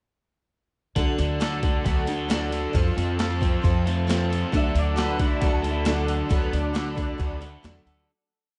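A dreamy, reverb-soaked mix with a dulled top end gives this short folk rock and heartland rock piece a hopeful, nostalgic glow, framed as a pre-chorus that moves from D to F and back to D before fading out from 6.3 seconds. A gritty, compressed sampler-style drum kit drives a big rock groove with a thumpy kick, a medium-tuned snare and hi-hat, while a woody, growly pizzicato upright bass plays a dotted figure underneath. A fresh-stringed steel-string acoustic guitar strums open chord shapes with audible finger squeak and a lush chorus, alongside a bright, double-tracked overdriven electric guitar picking crunchy arpeggios through spring reverb. A soft, flute-like tonewheel organ sits in the background with key click and a slow rotary speaker, holding sustained chords like a pad. From 4.6 to 7.4 seconds, a twangy, lo-fi electric guitar through a small, slightly broken-up amp adds blues licks colored by ensemble chorus and tape echo.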